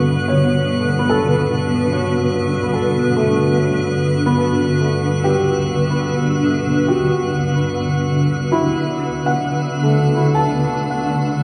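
A dreamy mix soaked in lush hall reverb opens this short ambient excerpt, cut from a longer piece, moving slowly at 55 BPM with a spacious, reflective mood over Gmaj7 that shifts to Dmaj7 at 8.8 seconds. Up front, a cloudy, evolving granular pad holds sustained chords with detuned ensemble chorus, while a felt-muted upright piano spins soft, intimate arpeggios through a delay. Beneath them, a veiled con sordino cello section bows a dark bass line in the background, and a glassy harmonics texture floats drifting overtones above.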